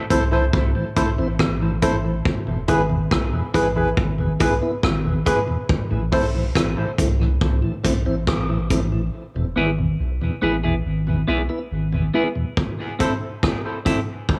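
Bathed in moderate spring reverb, this hypnotic, spacious dub reggae piece at 70 BPM in A harmonic minor moves between Am and E. A vintage drum kit of punchy kick, hi-hat and rim click sits up front beside a deep, round sub bass. A dark tonewheel organ turns through a slow rotary speaker with dub echo, while hollow, ring-modulated organ stabs sound through chorus and echo. A clean, picked electric guitar enters at 9.6 s with its own dub echo, and the drums run on to 14.4 s.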